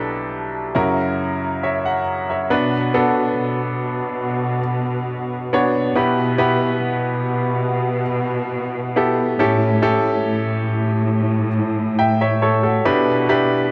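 A straight, unhurried 4/4 pulse carries this brief fragment of an emotional, melancholic pop ballad. A brilliant grand piano plays the accompaniment throughout, sitting up front with an intimate presence and audible action noise from the instrument itself. At 2.5 seconds a chamber cello section enters on the bass line, bowed with vibrato and played con sordino, giving it a veiled, muted colour. The harmony moves from G6/B and F#7 into Bm, then through Em/B and A7 before returning to G6/B near 12.9 seconds. Light reverb surrounds a dark, warm production, so the piano's sparkle stands against the cellos' shadowed tone.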